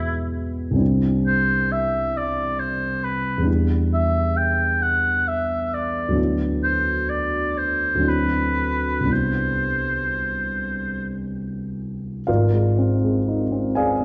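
This classical, impressionist duo for oboe and baby grand piano, cut from a longer piece, has a luminous, pastoral mood. It moves in a slow, rubato 3/4 at 55-69 BPM, in C lydian and tuned to A4 = 442 Hz. The oboe carries the melody with a warm, classical tone and vibrato, sitting up front yet sounding distant and roomy. Beneath it, the dark, mellow piano gives an intimate accompaniment with long sustain, audible action noise and a smooth, vintage character, moving through chords such as Eadd9, Em7, D69 and Cmaj9. The oboe stops at 11.2 seconds, and at 12.3 seconds a new section begins with the piano alone on an Ab6 chord. A moderate scoring stage reverb and a dark, warm production frame the whole passage.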